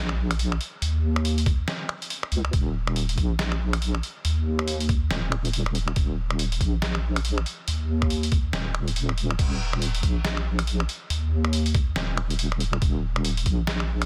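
Meditative and cavernous, this brief deep dubstep piece moves at 140 BPM in a swung half-time 4/4, with a dark, saturated wobble bass between Eb1 and Eb2 carrying chorus from the very start, a gritty, pitched-down trip hop sampler-style kit of crash cymbal, finger snaps, hi-hat and medium-tuned snare entering at 0.1 seconds, and a thumpy, tape-warm electronic kick joining at 1.5 seconds, all sitting up front in a dry, dense, heavily limited mix.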